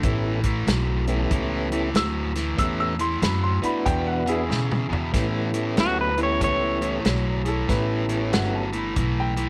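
A brilliant upright piano solo opens this swaggering, soulful electric blues shuffle, riding over an overdriven electric guitar riff, woody pizzicato upright bass, a tight soul drum kit with a rolled-off top and a clear tonewheel organ with key click and slow rotary speaker, before a drum fill leads into a new section at 5.1 seconds and a twangy, clean lap steel slide melody sings out from 5.8 to 7.7 seconds.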